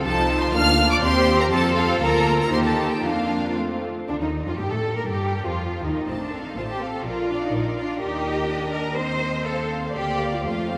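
Moving in a quick 2/4 at 122 BPM with a rubato feel, this cheerful, spirited classical-period movement for string orchestra sits in Bb major, tuned to A4 = 439 Hz, and is cut from a longer piece. A violin section carries the expressive, lush melody with vibrato, reaching up to F6, while a second violin section plays a smooth, even line in the background. Beneath them a close, rich-toned viola section supplies the accompaniment, and a distant cello section joins a warm double bass section, bowed with light vibrato, to form the bass. The lower parts begin at 0.0 seconds and the two violin sections enter at 0.1 seconds, with the harmony moving briskly through chords such as Bb/D, Eb6 and F before a new section opens at 4.1 seconds and settles into broader changes. A wet church reverb with a 3.2-second decay surrounds the ensemble in a spacious, resonant church acoustic.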